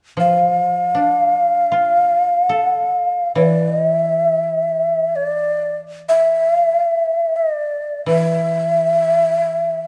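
Moderate recital-hall reverb surrounds this short cut from a longer piece of meditative, austere Japanese chamber music in free time, tuned to A4 = 441 Hz. Up front, a breathy, hollow bamboo shakuhachi carries the melody with vibrato, a crisp, chiffy attack and lifted highs. Beneath it, a dry, woody koto played with fingerpicks gives quieter accompaniment, both parts sounding from 0.2 to 9.9 seconds.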